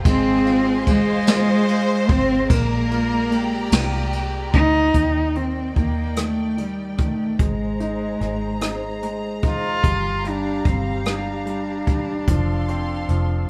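Opening on a lush symphonic violin section's second line, which plays until 5.0 s, over a clear concert grand piano, sul tasto studio strings holding soft chords and a round, foam-muted vintage fingered electric bass, this tender, romantic six-eight pop ballad at 49 BPM in Bb mixolydian brings up front a dark, woody bowed cello melody with vibrato and a jazz drum kit played with brushes, its boomy kick and dark cymbals sitting in a live room with moderate reverb.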